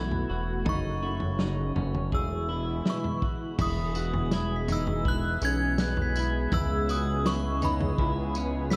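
A chiming FM synth melody leads this dreamy, blissful dream pop excerpt, its mellow, inharmonic tone ringing out through ensemble chorus and dub echo. Beneath it, a lush, warbling unison pad of detuned sawtooth voices holds sustained chords, while a clean, picked electric guitar plays arpeggios coloured by subtle chorus and its own dub echo. A glossy, retro synth bass sits up front, blending pulse and sawtooth tones with a quick filter pluck. A metallic, bell-like glockenspiel struck with hard plastic mallets rings faintly in the background, also trailing dub echo. From 0.1 seconds, a muffled, lo-fi vintage drum kit with dark cymbals, a punchy kick, snare, tambourine and toms carries the straight groove, as the harmony drifts from suspended and minor chords to a shimmering Emaj7 at 3.6 seconds within an echo-heavy mix and a small, lightly reverberant room.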